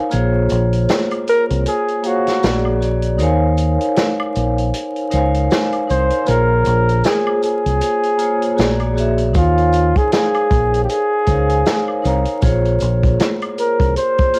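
A mellow, jazz-style flugelhorn with light vibrato and scooped notes takes the solo from 1.3 seconds in this hazy, nostalgic lo-fi hip hop fragment, set over a ringing, metallic vibraphone with slow motor vibrato, a dark, round fingered electric bass, a small-room vintage drum kit with a tight kick and rolled-off top, and maracas and woodblock tucked in the background, while cassette tape colours the horn, vibraphone and drums, and vinyl crackle and light reverb wrap the home-recorded sound.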